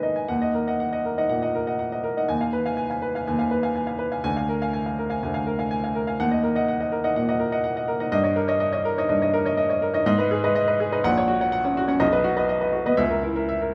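Passionate and stormy, this short passage from a longer classical work is a virtuoso piano study in E-flat minor, moving at 123 BPM in 4/4 with a flexible, rubato feel. A solo baby grand piano carries the whole passage from the opening to 13.7 seconds, ranging from A#1 up to G#5. Its tone is clear and natural, with short sustain, and it sits up front in the sound. The harmony travels from E-flat minor through Fm7b5 over Eb and Bb7 over D, then back to E-flat minor before turning toward D#7 over G, G-sharp minor, F# over A#, B, and finally A# diminished over C#. A wet recital hall reverb surrounds the instrument, lending the performance a sense of space.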